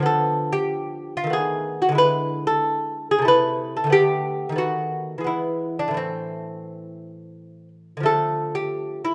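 A delicate, up-front solo lute with gut double strings, some doubled at the octave, rings in a moderate recital hall reverb through this solemn, flowing 9-second excerpt of a baroque-style classical dance in 3/4 and A minor, fingerpicked with rubato at about 84-94 BPM across a range from A2 to B4 as its harmony moves from Bdim/D through B7/D# and E7/D to settle on Am at 6.0 seconds before turning to Dm at 8.1 seconds.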